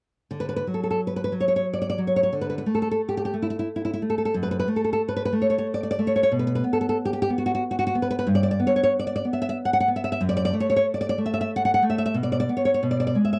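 A fingerpicked nylon-string guitar plays alone from 0.3 s, a romantic classical solo in D major at 91 BPM in 3/4 with a rubato feel and a nostalgic, warm mood. Its harmony moves from D through Dsus2 and F#madd11 to G and F#m7 before settling on Bm6, and the guitar sits up front with audible finger squeak. The sound is that of a dry, close 1970s-style studio recording with light reverb, and the passage is cut from a longer piece.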